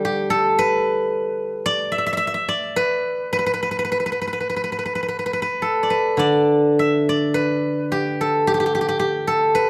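A dark, warm production with light reverb frames this short fragment of a traditional Chinese piece for solo plucked strings. A steel-string zither is the only instrument, sitting up front and sounding for the full 9.7 seconds. Played with fingerpicks, its acoustic tone comes across as warm, silvery and ringing. The pulse is loose and rubato, the beats falling unevenly so the phrasing feels unhurried and breathing rather than strictly measured. The part moves across a span from D3 to E5, lending the passage a flowing, serene character that suits its place as a piece cut from a longer whole.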